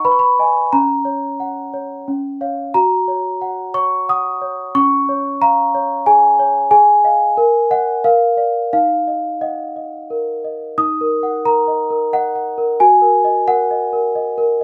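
A solo celesta, bell-like and delicate with the airy sound of hard felt hammers, sits up front in light reverb for this tender, innocent classical lullaby in a rubato 3/4, moving into a new section at 10.8 seconds in a passage cut from a longer piece.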